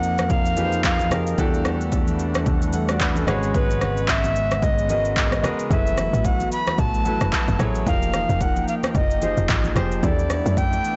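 Swung 16ths at 111 BPM drive this deep, hypnotic amapiano fragment, where a punchy, up-front deep house kit of kick, handclaps, rim click and shaker sits over very quiet, dry congas, a warm concert grand piano and a thick, detuned pad pumping with chorus in the background, while an airy, chiffy tenor recorder carries the melody through delay, a punchy fingered electric bass drops out at 5.4 s before a woody, decaying log drum bass enters at 5.7 s, and the whole overdriven, blown-out recording has a dulled top and light reverb.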